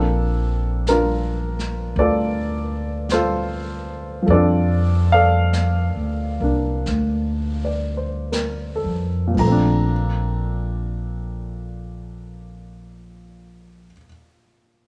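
A baby grand piano sits up front in this intimate, tender jazz ballad excerpt, its natural, short-sustained tone carrying audible action noise as it comps in a slow swing over a Bbmaj9 chord. Beside it, a pizzicato upright bass with steel strings gives a woody low line, also close and present, until it stops at 13.9 seconds. A brushed drum kit sits further back and sounds roomy, with dark cymbals, a medium-tuned snare and a punchy kick, joining at 0.9 seconds and dropping out at 9.6 seconds. The pace slows through the opening stretch, and after 9.9 seconds a second section begins with piano and bass alone. The small room lends the recording a dry, close ambience, and the piano rings on by itself for its final second.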